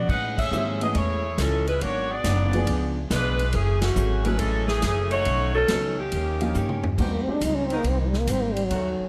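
A clear, lightly vibrato saxophone section carries the melody of this joyful, energetic big band swing excerpt over a woody pizzicato upright bass, a picked steel-string acoustic guitar in the background, a punchy swinging drum kit and an intimate baby grand piano with audible action noise, until a drum fill hands over at 7.0 seconds to a breathy, whispered trombone solo with scooped notes above distant, roomy saxophone chords, the recording carrying light reverb and lossy compression artefacts.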